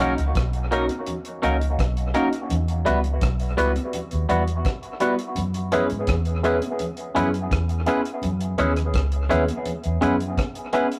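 Romantic and smooth, this lovers rock reggae excerpt moves at 84 BPM in a straight 4/4, cut from a longer piece and moving through Bmaj9, Emadd9 and F#9sus4. A barky, lightly overdriven tine electric piano sits up front through a combo amp with phaser and dub echo, beside clean, compressed stabs from a twangy electric guitar and a round, punchy, foam-muted vintage fingered bass. Underneath, a dark, dry reggae kit with tight kick, hi-hat, rim click and dub echo pairs with very quiet, high-tuned congas, all in a small, rough rehearsal room.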